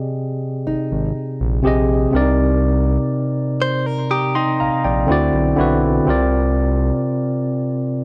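A slow, straight 4/4 at 61 BPM sets a moody, sensual R&B feel in C minor, with a bright, clean tine electric piano carrying the chords up front, moving from Abmaj9#11 through Cm7 and D7 to Bbadd9. A smooth synth bass with a ring-modulated sawtooth edge sits low beneath it. A faint thumb-plucked nylon-string guitar, finger squeak audible, adds tape-echoed texture near the start, and a compressed, direct-recorded clean electric guitar plays picked arpeggios with tape echo from 3.6 to 5.1 seconds, all within a gritty hardware recording touched by light reverb.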